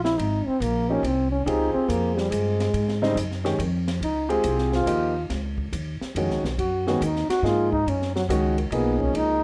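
Open and searching in mood, this modal jazz passage, cut from a longer piece, moves at 141 BPM in a swung 3/4. A mellow trombone takes the solo from the start, sitting up front with a punchy, forceful tone, a smooth top and a light vibrato. Beneath it, a woody, thumpy upright bass played pizzicato on gut strings also stays close, while a studio-room jazz kit adds hi-hat, ride cymbal, a high-tuned snare and a boomy kick at a lower level. A concert grand piano joins at 0.9 s as accompaniment, intimate and vintage in character, with deep bass and audible action noise. The harmony rests on a Dbmaj9 chord before shifting at 5.3 s to Db9sus4 and settling into D-flat mixolydian, with the whole recording placed in a light reverb and a top end that stops at 10.6 kHz.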